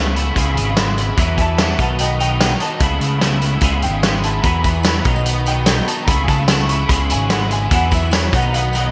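Upbeat yet wistful, this short indie rock excerpt in E major moves at a straight 147 BPM, with a twangy, clean electric guitar and a biting overdriven guitar in the background both playing riffs through ensemble chorus over a round, punchy overdriven picked bass that sits up front. A loose, gritty drum kit with a punchy kick and gated reverb enters at 0.2 seconds, a clear, woody upright piano carries the melody from 1.4 seconds with long sustain and subtle chorus and delay, and a very quiet, jingly tambourine joins at 4.4 seconds. The chords cycle through C#m7, Esus2, B and Aadd9/C#, framed by lush hall reverb and bright 1980s-style digital production.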